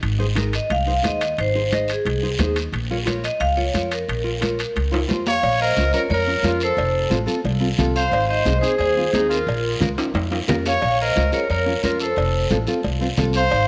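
A driving cumbia groove at 178 BPM in 4/4 with a straight feel opens this fiery, danceable excerpt in Bb minor, carried by a woody pizzicato upright bass sitting up front alongside a raspy, close guiro and ringing metal-shell timbales and cowbell. Soft-handed, high-tuned congas with a damped, thick-skinned tone sit in the background, while a full-bodied fingerpicked nylon-string guitar fills in the harmony around Ab, Bbm and F. Over this, a vibraphone struck with hard mallets leads the melody, its metallic, ringing tone colored by a medium motor vibrato. A drum fill at 4.9 seconds ushers in a new section, where a bright, close-miked trumpet enters at 5.3 seconds with a pop-style second line, and another fill around 10.0 seconds keeps the momentum up. A moderate echo chamber reverb adds a roomy glow to the whole blend, which is cut from a longer piece.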